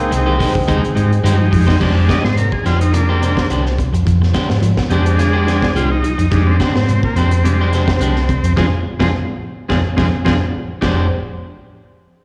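A crunchy breakbeat drum kit sets a lightly swung sixteenth-note afrobeat groove, its punchy kick, high-tuned snare, dark cymbals and hi-hat sounding gritty and saturated with a rolled-off top. A round, dark hollow-body short-scale bass sits loudest in the mix beneath it. The piece opens on a brief horn figure: a breathy, wah-wah plunger-muted trombone carries the melody with slapback echo. A very quiet, scooped trumpet and a clear bass trombone with light vibrato play the second line, and all the horns are gone by 1.5 seconds. From 1.8 seconds a buzzy, up-front transistor combo organ with heavy vibrato and slapback echo takes a solo over the funky, hypnotic vamp. Beneath it a very quiet, clean semi-hollow guitar plays dark arpeggios, and a picked guitar at the edge of break-up adds echoed stabs. A band accent arrives at 8.6 seconds, and the whole excerpt has the feel of a live gig heard through the venue's PA, with recital-hall reverb and small-room ambience around it.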